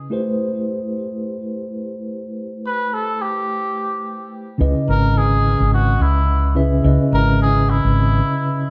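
A cup-muted trumpet carries the melody from 2.7 seconds, its soft, veiled tone shaded with vibrato and digital delay, sounding distant and roomy in a jazz style. Beneath it, a mellow tine electric piano with delay plays from the start, moving from Am9 to C#m9, and a woody fretless electric bass, round and hollow-bodied with lush chorus, sits up front from 4.6 seconds. This smooth sunset chillout excerpt runs at 107 BPM with swung 16ths, set in a dark production with moderate recital hall reverb.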